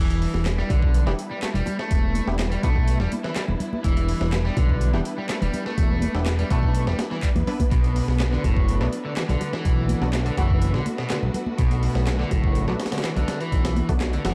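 A dark, dry production frames this energetic, gritty breakbeat excerpt in E minor at 124 BPM, where a compressed sampler-style drum kit with a thumpy kick and high-tuned snare sits up front beside a fat, detuned sawtooth analog bass, while a crunchy overdriven guitar riff trails dub echo, distant bowed strings hold sustained chords with sidechain pumping over Em7 and then Bm7 at 7.7 seconds, and in the background close bongos and congas, overdriven electronic handclaps and a nasal, punchy orchestra-hit-like synth stab entering at 1.1 seconds fill out the mix.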